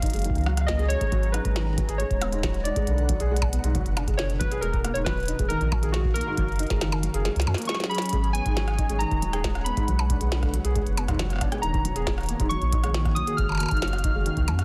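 A straight 4/4 pulse at 137 BPM drives this intricate, cerebral IDM excerpt in G# dorian, anchored by a deep, tape-tinged electronic kick sitting in the background and a glitchy drum kit of clicky hats, percussion blips, rim clicks and a tiny overdriven snare that sounds re-recorded in a small room. Around 7.3 seconds the kick drops out for a drum fill, returning at 8.1 seconds as the opening passage repeats. A round sine sub bass holds the low end, while a felt-muted upright piano plays soft, intimate arpeggios through a delay. Above them, warbling lo-fi synth keys carry the melody with a detuned, nostalgic character shaped by a filter sweep, chorus and digital delay, while a glassy FM pad spanning the low and high registers sustains ethereal chords with slow attack, ensemble chorus and built-in reverb. The harmony moves through F#maj7, G#m7, Bm and D#m, with added colour in later passes, all set in light digital ambience within a dense, heavily limited modern master.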